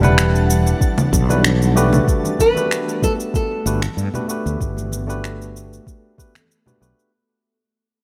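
A light reverb glazes this relaxed, smooth sunset chillout cut, where a fingerpicked nylon-string guitar with full-bodied tone and audible finger squeak carries the melody over a bright, barky tine electric piano, both touched with digital delay, while an ethereal, airy pad with ensemble chorus sustains Em9 and Gmaj9 chords in the background. A growly, up-front fretless bass holds down the low end alongside overdriven electronic congas, cabasa and finger snaps, very quiet, distant acoustic congas, and a soft electronic kick that enters at 0.8 seconds and briefly drops out, while a twinkling granular texture glimmers through the opening. From 2.1 seconds the pad is filter-swept as the piece fades out, and the guitar falls away at 4.6 seconds.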